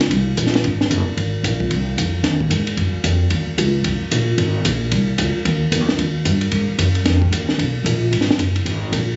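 A woody, thumpy upright bass on gut strings anchors this intense, cool modal jazz fragment, plucked pizzicato and sitting up front from 0.0 to 9.2 seconds, a short cut from a longer piece in Eb dorian. At a brisk 224 BPM in 4/4 with a light swing on the eighths, the bass ranges from Gb1 to Ab2. A compact cocktail drum kit plays close and dry, with dark cymbals on the ride and hi-hat, a high-tuned snare and a punchy kick, dropping out at 9.0 seconds. The music moves from its opening passage into a new section at 6.5 seconds. The sound has the feel of a phone capturing a small club: light reverb, compression and a dull top end give it a murky, live-in-the-room character.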